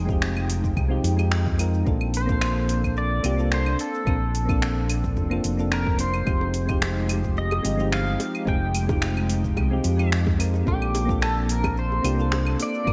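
Sunny and smooth, this sunset chillout excerpt in Bb major moves at 109 BPM with a light swing, where a dark, overdriven, punchy electric bass sits up front under mellow, detuned electric-piano-like synth keys with chorus and digital delay, a breathy, airy pad in the background, a deep, tape-warm electronic kick and a deep house kit of claves, finger snaps, metallic hi-hats and shaker with gated reverb, while a bright, twangy pedal steel guitar enters at 2.2 s with slide, volume swells and analog chorus and delay, and very quiet, tight, high-tuned bongos join at 6.4 s, all over Fm9 and Bbmaj9 chords in a bright 1980s-style digital production.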